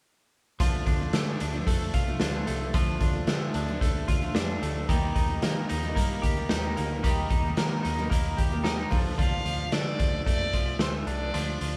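Bright and breezy, this jangly indie pop fragment, cut from a longer piece, moves in a straight 4/4 as a band playing live in one room with light reverb. A drum kit sits up front with a punchy kick, a medium-tuned snare and hi-hat, its sound dark and smooth with a rolled-off top and a bright stone-room ambience. Beneath it, a vintage fingered electric bass sounds round, amped and foam-muted, while a clean, compressed, twangy twelve-string electric guitar plays picked arpeggios through spring reverb. A full-bodied dreadnought acoustic guitar, picked and set in the background, adds accompaniment over Dm and Eb chords until 9.2 s. At that point a single bowed violin takes the melody until 11.8 s, expressive and warm with vibrato, portamento and a silky top.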